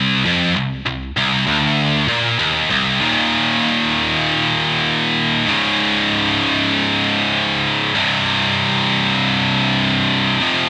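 A scooped, high-gain electric guitar carries this aggressive, relentless metal passage alone, picked and double-tracked with a bright, distorted edge that sits up front in the mix. The tempo is 97 BPM in a straight 4/4, set in C Phrygian, with the guitar working in a low register between C2 and F3. The opening 3.0 seconds hold off from any chord before power chords arrive on Eb5, then Db5 at 5.5 seconds and C5 at 7.9 seconds. A moderate studio reverb lends the sound a sense of room. The recording is cut from a longer piece and runs 10.7 seconds.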